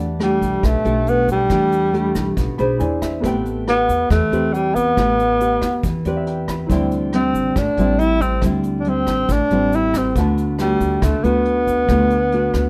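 Fingerpicked nylon-string guitar, a smooth vintage grand piano and woody pizzicato upright bass open this wistful, melancholic bossa nova excerpt, joined almost at once by an intimate, breathy tenor saxophone carrying the melody up front with vibrato and scooped notes, a brushed drum kit with a punchy kick and rim clicks, and a grainy egg shaker in the background, while the piano slips in brief fills at 2.4 and 5.8 seconds over rich extended chords in light reverb.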